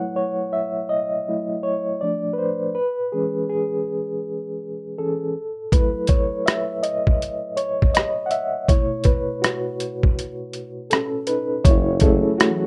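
Melancholic and nostalgic, this lo-fi hip hop excerpt opens with a reedy electric piano alone, its fast tremolo and low-pass filter giving a clean, up-front tone over F#m7, F6, E6 and B9sus4 chords. A gritty, pitched-down boom bap kit with a thumpy kick, hi-hat and rim click joins at 5.7 s, sounding compressed and tape-warm in a swung groove. At 11.6 s, mellow string-machine cellos with ensemble chorus settle in the background on F#m9, and a tuba follows with a brief low note carrying jazz-style vibrato, the whole set in a rough home-demo mix with light reverb.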